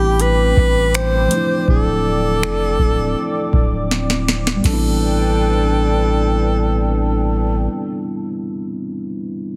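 A breathy alto saxophone leads this late-night contemporary R&B excerpt, carrying a longing, close-miked solo melody with vibrato, subtones and scooped notes, trailed by tape echo. Beneath it, muted, felt-like synth keys give soft, dark accompaniment through a chorus effect, while a hollow, flute-like pad holds airy sustained chords that pump gently against the beat. A deep, sine-toned 808-style bass sustains long, decaying notes up front as the harmony moves from Am11 to Dm7 and back. A booming analog drum machine arrives at 0.2 seconds with a deep kick, crisp snare, metallic hats, finger snaps and a crash, playing a fill at 3.9 seconds before dropping away. Once the sax, pad and bass stop at 7.7 seconds, the keys linger alone, and the whole mix carries light digital ambience and a heavily compressed, radio-like sheen.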